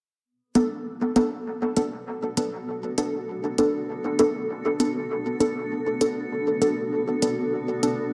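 A muted, deep dub chord stab leads this hazy ambient dub excerpt at 99 BPM in B minor, its detuned sawtooth-and-square tone carved by a filter sweep and colored with phaser, 12-bit sampler grit and dub echo as it sounds a Bm7 from 0.6 s. Smooth electronic hi-hats, overdriven, echoed and re-recorded in a large room, sit low beneath it, while a bright, blurred granular cloud pad with its own reverb fades in from 1.5 s to hold sustained chords up front. A moderate plate reverb and an echo-heavy mix give the clip a deep, drifting space.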